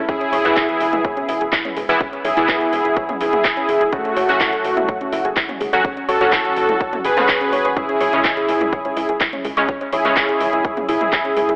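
Melodic techno in C# minor at 125 BPM, hypnotic and dramatic, cut from a longer piece and moving through E, F#m and C#m over a straight 4/4 pulse. An up-front soft supersaw carries the smooth, evolving melody with tape echo, while bright, brassy synth stabs and a round, dark pluck arpeggio in the background share chorus and analog delay, all three pumping against the sidechain along with a tight, driving sequencer bass in the background. A punchy electronic kick and a house kit of handclaps, metallic hats and toms give a tape-colored drive, and the whole mix is framed by a lush hall reverb yet carries a gritty, telephone-like hardware character.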